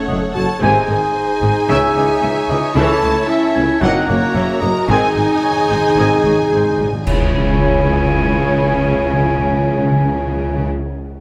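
Determined and adventurous, this heroic film-score passage sets a lush, bowed violin section on the melody over a second violin line, while a dark clarinet, a hollow silver flute and a soft-attack oboe (which drops out at 6.8 seconds) carry further lines and a very quiet, distant viola section fills the accompaniment. Mellow French horns and bright, tight trombones hold sustained chords, clear trumpet stabs ring out, and rich cellos join double basses and a roomy tuba on the bass, set in a moderate scoring-stage reverb. Hard-mallet timpani play a fill before close-sounding clash cymbals and concert bass drum enter at 7.1 seconds for a full-band accent.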